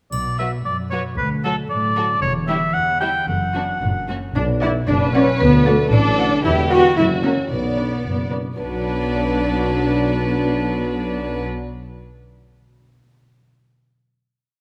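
Sneaky and quirky, this whimsical cinematic cue in B minor moves at 114 BPM in a straight 2/4, opening with a clear, up-front oboe, ringing harp broken chords, a touch of close, dry triangle and dark, woody cellos over pizzicato double basses. The rich and warm violin sections and floating violas bring after-beat chords and a counter-melody from 0.4 seconds, and at 4.4 seconds the melody passes to a dark, percussive marimba, with a distant, roomy tuba doubling the bass line, before a mellow French horn section adds sustained chords from 4.6 seconds. Moderate scoring-stage reverb surrounds the ensemble as the piece settles on a final B minor chord.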